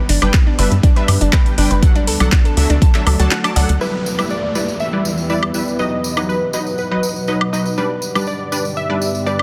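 A straight 4/4 progressive house groove at 121 BPM rides a deep, tape-warm, up-front electronic kick until 2.9 s, with a deep house kit of handclaps, metallic hi-hats and woodblock pumping under the sidechain, while a punchy sawtooth sequencer bass and a round, detuned analog pluck arpeggio with tape echo drive the dreamy, emotional E minor opening over G and D chords. An evolving, morphing wavetable pad sustains chords throughout, filter-swept through the opening, joined by filtered supersaw stabs with analog chorus and tape echo, and after a brief break at 3.3 s the bass and pluck drop away. At 3.8 s a catchy, detuned unison lead with digital delay takes the melody over Em, B and G, accompanied by a jingly acoustic tambourine and a downlifter in the background, all set in light digital ambience and a dense, heavily limited modern master.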